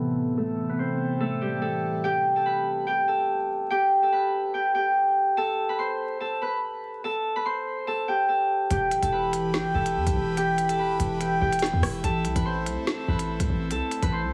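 An ominous, dark drill beat opens with a clear, ringing, fingerpicked Celtic harp melody over a breathy, chorused pad and a filter sweep, and the pad drops out at 2.0 seconds while the harp, softened by a low-pass filter and digital delay, carries on over Am, Gadd9 and Em chords. At 8.7 seconds a punchy, tight 808-style bass and an electronic drill kit with a woody snare, crisp hi-hats and rim clicks arrive in a half-time feel at 144 BPM, with the airy pad returning at 8.9 seconds. The whole cut, taken from a longer piece, sits in a heavily compressed, radio-like sound with vinyl crackle, a low-pass filter and small-room ambience.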